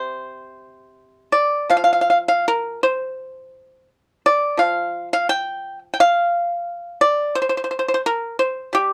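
Chinese traditional music in an elegant, flowing rubato around 79-88 BPM in the C shang mode, this short passage from a longer piece features a solo acoustic pipa played with fingerpicks, its dry, percussive tone sitting up front and ranging from C3 to G5, within a dark production touched by light reverb.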